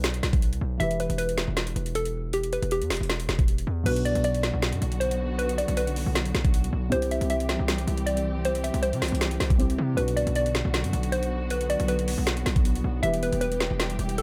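A distorted 808-style bass sits up front in this eerie, hard-hitting trap excerpt, its heavy, saturated sine tone carrying a gritty noise layer and a fast attack that decays under the beat. The trap drum kit sits up front at 157 BPM in a half-time feel, pairing a knocking kick and woody snare with metallic hi-hats and crash cymbal. A hollow, bouncy square-wave pluck carries the melody, detuned and softened through chorus, a low-pass filter and tape echo, while a felt-muted upright piano adds dark, intimate accompaniment in the background. At 3.9 seconds a muted string section enters, bowed con sordino with vibrato and a veiled, lush ensemble sound that sustains chords over the B phrygian harmony moving among Bm, Em and C. The mix is dry, and the passage is cut from a longer piece.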